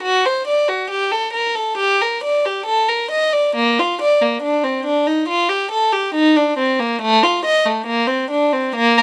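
Solemn and flowing, this 9-second excerpt of a baroque-style suite movement for unaccompanied violin unfolds at 69 BPM in 4/4 with a rubato feel, tuned to A4 = 441 Hz. A single bowed violin carries everything from start to finish, its rich gut-string tone and reedy period-style colour ranging from A3 to Eb5. Close, detailed microphones and little reverb place the player up front.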